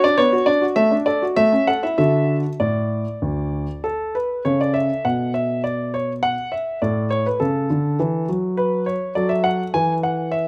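A straight 4/4 pulse at 102 BPM carries this playful, cheerful classical-period piano sonatina, cut from a longer piece. A clear grand piano plays solo across a range from D2 to G#5, tuned with A4 at 437 Hz. It opens in D major, moving from Bm through D/A and A to D. At 4.5 s the music shifts to A major, passing through F#m/A and arriving at a rootless D chord at 9.2 s. Close, detailed microphones give the piano an intimate, polished, up-front presence, with audible action noise, light reverb and a faint mains hum beneath the playing.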